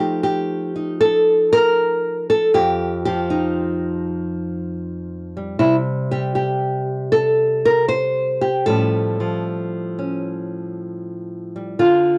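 A fingerpicked nylon-string guitar plays alone from the start, its bright, fresh-stringed tone small and up front with a cassette-tape colour, moving from F9 to C5 at 5.6 seconds and on to Aaug7 at 8.7 seconds. This sophisticated, warm solo jazz fragment moves at 78 BPM in 4/4, with a loose rubato swing and a range from F2 to C5. A wet, small-room reverb and the character of a home cassette recording surround this brief 12.2-second portion of a longer piece.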